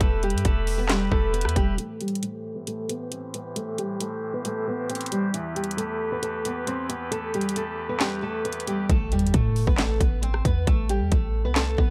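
A dark, dry production frames this eerie, melancholic half-time trap excerpt at 135 BPM, moving from Em through Am7 back to Em before landing on A7(no3). A full-bodied picked steel-string acoustic guitar carries the melody up front, a soft-reed pipe organ on an oboe stop, with chiff and tremulant, holds filtered sustained chords until 8.9 seconds, and the electronic drum kit hits with a hard-clipped kick, sharp snare, metallic hats, handclaps and rim clicks. The deep, boomy 808-style bass sounds only in the opening moments and returns at 8.9 seconds, as a filter sweep ends and a very quiet electronic impact arrives at 9.1 seconds.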